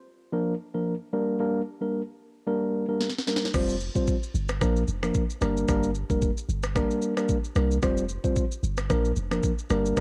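A lightly swung 112 BPM afrobeats groove in Bb major, cut from a longer piece, opens breezy and sunny with a mellow tine electric piano, tinted by cassette tape, cycling through Bb, Gm and Fsus2, then a drum fill at 3.0 s brings in an electronic, overdriven afro-pop kit of knocking kick, sharp snare, rim click, finger snaps, shaker and crash, and at 3.5 s a deep, punchy sine sub bass with a pitch-drop attack joins, the keys and drums sitting up front in a dry home cassette recording.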